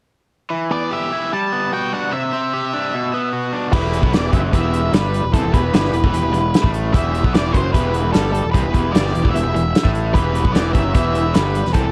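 A straight 4/4 pulse at 150 BPM drives this restless, cool indie rock piece in E minor: a bright, compressed overdriven electric guitar riff opens at 0.5 s over Em, Gmaj7, Cadd9 and Bm, joined almost at once by a dark octave-fuzz lead guitar melody with distortion and slapback echo, until at 3.7 s an up-front loose indie drum kit with a tight kick and medium-tuned snare, a punchy fuzz picked electric bass and a crunchy overdriven guitar, set back in the mix with ensemble chorus and slapback echo, come in together within light reverb and a warm production.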